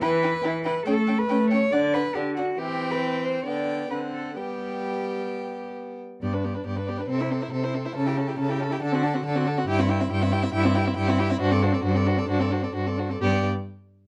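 Graceful and lively, this quick classical-period movement for string quartet moves at 126-143 BPM in 4/4 with a rubato feel, settled in G major and tuned to A4 = 439 Hz. The first violin carries the melody between B4 and A5 with an airy bow, a nasal edge and a close presence, while the second violin plays a supporting line beneath it. A dark viola with light vibrato and a smooth top fills in the accompaniment, and an up-front cello provides a rich bass that ranges from G2 up to D5. All four players share a gut-string, period-style sound with a reedy color, and the cello and viola sit louder than the violins. The harmony opens on Em and travels through A7, D and C/E before reaching G at 4.4 seconds, then a second section from 6.2 seconds wanders through Am/C, A7/C# and D7 to land on G at 13.2 seconds. Light reverb and a dark, warm production frame this short section cut from a longer work.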